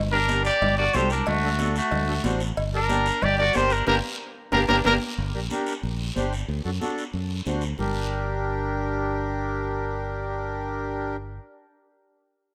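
Cumbia with a fiery, passionate drive, in which a vibrato-laden solo trumpet sings up front over a slightly broken-up, twangy electric guitar and dry cowbell and timbales until about 4.9 seconds, while a reedy accordion and a growly, bright fingered electric bass carry on alongside ringing congas and a raspy guiro, with a band accent and drum fill closing the first section at 5.2 seconds in a rough, lightly reverberant home-demo sound.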